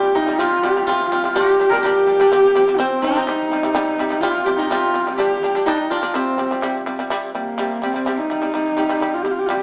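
A dark, husky horsehead fiddle leads this solemn, vast Mongolian folk passage at 125 BPM, its nasal, bowed melody sitting up front with light vibrato, portamento and a slapback echo, while a ringing, silvery steel-string zither plays a second line until 9.1 s and a buzzing, plectrum-plucked fretless shamisen adds percussive arpeggios, the band heard live in one room with moderate studio reverb and a small-speaker sound in this short cut from a longer piece.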